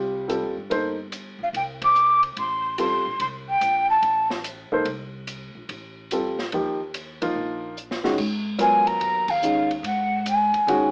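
Heard through a narrow AM-radio filter with moderate studio reverb, this short cut from a longer modal jazz piece swings at 144 BPM in 4/4 with a cool, hypnotic mood. An intimate baby grand piano with audible action noise carries the chords from Cm6 through Eb7 to G#m9. Beneath it sit a woody pizzicato upright bass and a small-room acoustic kit with dark cymbals and a boomy kick, and the drums add a fill just before the second section. A breathy flute with vibrato, chiff and plate reverb sits up front, playing the melody from 1.4 to 4.3 seconds and returning at 8.6 seconds, and the band hits two accents along the way.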